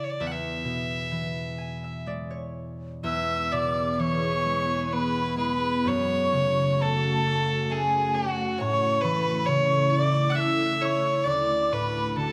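A single bowed fiddle carries the melody of this Celtic slow air, its clear, biting and earthy tone set up front with a light vibrato, yet carrying a faintly distant quality. Beneath it, a fingerpicked concert harp provides ringing, warm accompaniment from the very start, adding a fill between 1.1 and 3.0 seconds. At 3.0 seconds a mellow, hollow silver flute enters with a close-miked second line above the fiddle, its tongued notes trailed by tape echo. A soft, bright organ-like pad joins at 3.6 seconds, holding full-bodied, detuned sustained chords with a slow attack, long release, ensemble chorus and built-in reverb. In a rubato three-beat lilt, the harmony moves from E through F#m and A to D. The whole passage sits in a moderate recital hall reverb, and its pastoral, nostalgic mood feels like a brief moment taken from a longer piece.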